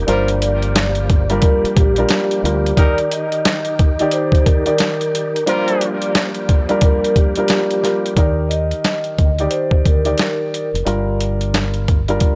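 A swung 16th-note boom-bap groove at 89 BPM drives this soulful hip hop passage in Eb major, led by a compressed, pitched-down sampler kit up front with a thumpy kick, medium-tuned snare and hi-hat, over a round, dark fingered electric bass that drops out at 2.7 seconds and returns at 8.2 seconds. A mellow soft-mallet vibraphone with slow motor vibrato carries the melody through tape echo, while an intimate vintage baby grand with audible action noise accompanies over Gm7 and Ebmaj7, and a tight, clear trumpet section adds smooth, soft-attack jazz stabs until 5.9 seconds. A reedy tonewheel organ with key click and fast rotary speaker holds sustained chords in the background, and the recording sits in a dry, gritty small room with transformer saturation.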